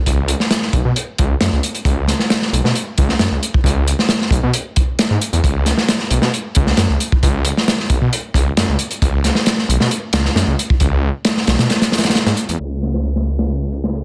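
Breakbeat at 134 BPM in a straight 4/4, this gritty, raw cut from a longer piece sits in C# minor pentatonic. A crunchy acoustic breakbeat kit with a tight kick, medium-tuned snare and hi-hat plays up front, saturated and mid-forward with a rolled-off top and high-pass filtering across the kit and room, alongside a thick, menacing detuned saw bass, also up front, whose beating tone blends sawtooth and sine, with a fast attack and sustained notes between B1 and B2. Light reverb frames a dense, heavily limited modern master, and a filter sweep arrives at 12.6 seconds as the section changes.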